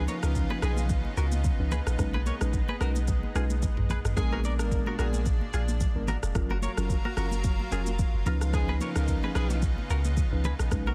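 A deep, punchy sub bass with a pitch-drop attack anchors this joyful, romantic afrobeats excerpt at 110 BPM, joined by an up-front electronic drum kit with deep kick, rim click, shaker and toms, bright high-tuned congas in the background, a mellow tine electric piano, a lush detuned unison pad with chorus, a twangy direct-recorded clean guitar riff with chorus and delay, and a distant, roomy horn section that enters in short bursts at 0.0, 4.2 and 8.5 seconds over chords moving from C#9 through B69, A#7b9 and F#maj7, all in a dense, heavily limited modern mix with digital ambience.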